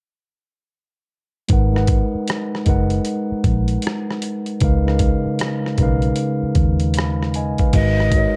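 Dark, lightly reverberant production frames this smooth, late-night R&B and neo-soul fragment at 77 BPM in G# dorian: a mellow, clean tine electric piano moves from G#m9 to C#13 over a round, punchy, foam-muted fingered bass and a gritty, compressed sampler-style drum kit with a thumpy kick, hi-hat, rim click and crash, the three starting together at 1.5 s, before a breathy jazz flute with a chiffy attack, vibrato and a slightly unsteady tone slips in on a single D#5 at 7.7 s as the chord returns to G#m9.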